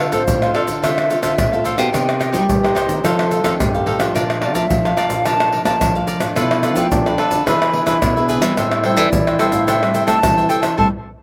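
Lively and joyful, this samba-choro fragment sets a hollow, airy jazz flute melody over a forceful, vintage-toned trombone second line, with a crisp picked cavaquinho and a thumb-plucked nylon-string guitar filling in the accompaniment. A second classical nylon-string guitar carries the bass while tube shaker, pandeiro, tamborim and a deep surdo drive the groove. Slapback echo touches the flute, trombone, cavaquinho and accompanying guitar in an otherwise dry, open-air sound, and the band closes on an accent at 10.8 seconds.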